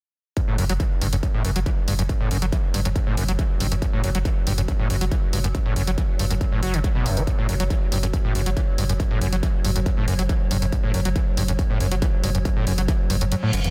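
A dense, heavily limited mix with light reverb opens this short cut of driving peak-time techno at 139 BPM in F# phrygian, intense and hypnotic, where a distorted, layered kick sits up front beside a squelchy, resonant sawtooth acid line that screams through filter sweeps with chorus, tape echo and sidechain pumping. Beneath them a deep, thick sine sub bass holds F#1 with tube saturation, an overdriven, dry analog hi-hat ticks along, and from 1.8 seconds an eerie, evolving FM drone hangs metallic in the background on F#3. The kick drops out at 13.3 seconds as an electronic reverse cymbal rises into the cut.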